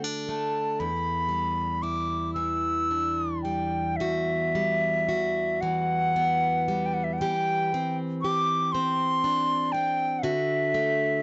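A bright wooden flute and a picked, plugged-in steel-string acoustic guitar begin together, setting a mournful, longing tone in this short fragment of Celtic folk. The music moves in a slow, free-flowing 6/8, with the rubato feel letting each phrase breathe. The flute carries the melody high in its register with an airy, straight tone and crisp attack, sitting up front and playing expressively. The guitar accompanies from its low bass strings into its middle range, its picked strings sounding bright and concert-like, with audible finger squeak on the frets. Over a D chord that moves to Em7, then Emadd9 and Cadd9/E, the same section is heard twice before returning to D at 10.2 seconds. Light reverb surrounds a dry, gritty hardware recording whose dulled upper highs give the whole fragment a rough character.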